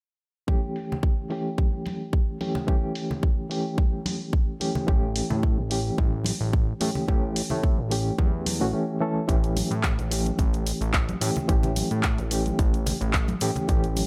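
Nu-disco at 109 BPM in A mixolydian, groovy and sunny, built on a bright, reedy electric piano with fast tremolo, sidechain pumping and a filter sweep over an A7 chord, a punchy up-front electronic kick, a house kit with bright hats and handclaps, congas and cabasa tucked in the background, and a fat, detuned analog bass with tube saturation that enters at 4.9 seconds, all in a fairly dry mix cut from a longer piece.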